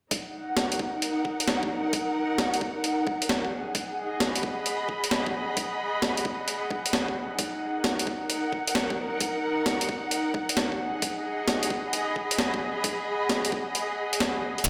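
Soulful and skippy, this two-step UK garage excerpt moves with a swung sixteenth-note lilt over a single E-flat minor chord. A gritty, compressed sampler-style breakbeat kit of hi-hat and medium-tuned snare sits up front, joined by a knocking, tape-warm electronic kick that drops out from 13.7 s to 14.7 s. Muted strings played con sordino carry the texture, veiled and lush with vibrato and a smooth top, pumping against the beat through sidechain compression. Behind them an airy, breathy pad holds sustained chords in the background, its detuned layers thickened by chorus and also pumping. A round, deep dub sub bass arrives only at 14.7 s, and the whole piece sits in a large, reverberant studio space with a moderate plate reverb.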